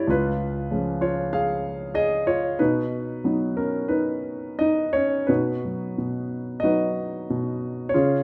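Rubato phrasing over a 4/4 metre shapes this brief, hopeful classical fragment for solo concert grand piano, its warm tone, deep bass and short sustain sitting up front in a moderate recital-hall reverb as the harmony moves from C# to B at 2.6 seconds and a new section begins at 5.3 seconds.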